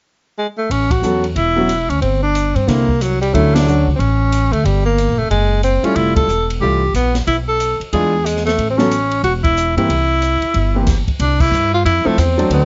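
A bright, up-front tenor saxophone opens at 0.4 s with a soft-attack, vibrato-laden melody, and by 0.7 s a woody pizzicato upright bass and an acoustic drum kit with dark cymbals, a medium-tuned snare and a boomy kick join in, with a clear grand piano entering at 1.0 s. This relaxed, warm small-group swing and bop piece moves briskly at 183 BPM in 4/4 with a swung eighth-note feel. Chords such as A69, Dmaj9, E7b9 and Fmaj7 pass beneath recurring band accents, all set in a dark production with light reverb in a studio room before the fragment cuts off.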